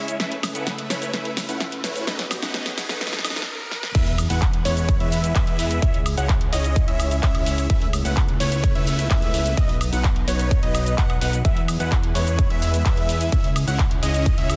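Triumphant and anthemic, this festival progressive house excerpt drives along at 128 BPM in a straight 4/4, set in E major. It opens with a build-up: a lush, chorused unison pad holds sustained chords in the background while huge, detuned supersaw chords play a riff through a filter sweep, phaser and delay, and a house drum kit of cabasa, crash, handclaps, bright hats, punchy snare, woodblock and fills pushes toward a brief stop at 3.5 seconds. A very quiet riser leads into the drop at 3.9 seconds, where an impact lands and the punchy, up-front electronic kick, a fat, saturated analog bass and a bold, mellow unison lead with vibrato, delay and a sub octave enter together. Over the drop the lead plays arpeggios across a chord cycle of E, C#m, Aadd9/C# and B. Sidechain pumping breathes through the pad, supersaws, lead and bass, and the dense, heavily limited master carries light reverb.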